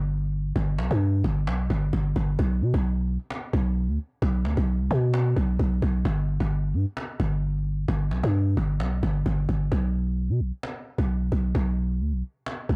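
A growling, buzzy 808-style bass with a fast attack and decaying sine body sits up front from 0.0 s in this dark, menacing trap and hip hop cut at 131 BPM in a half-time feel, joined from 0.1 s by a woody, distant cajon of hard hands and faint snares in a large room, all carrying a small-room cassette tape character that moves into a new section at 9.7 s.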